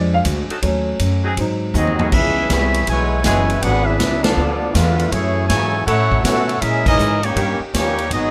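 Big band swing in C# minor at 160 BPM with a dramatic, sultry mood: a present baby grand piano leads the opening 2 seconds over a woody, growly pizzicato upright bass and a distant, roomy drum kit with a punchy kick, until a drum fill ushers in a tight trumpet section carrying the melody with light vibrato and a bright, soft-attacked trombone section on a second line at 1.8 seconds, while a vintage saxophone section holds sustained chords in the background and the full band hits accents at 4.2 and 6.8 seconds, all in light reverb.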